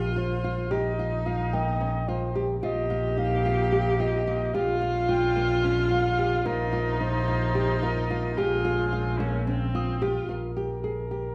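A dark, warm production sits in a moderate recital-hall reverb, giving this pensive, hypnotic piece of contemporary chamber music a gently enveloping space. Cut from a longer work, it moves in 7/8 at 219 BPM counted in eighths, with a straight feel, in Bb dorian. A fingerpicked classical nylon-string guitar lays down arpeggios with audible finger squeak, while a bowed double bass holds a focused, up-front Bb1 with vibrato and a distant-sounding bowed viola carries a rich second line. Almost from the start a breathy, mellow flugelhorn sings the solo melody in a jazz style, with light vibrato and scooped notes. From 2.6 seconds a tight woodwind section adds smooth sustained chords in the background, and a delicate, bell-like celesta sparkles in brief dry touches around 1.5 seconds and again from 6.5 seconds. The harmony drifts through suspended and minor-ninth colours over a Bb pedal before turning to Bb7(no3) at 10.3 seconds, where the short closing section begins.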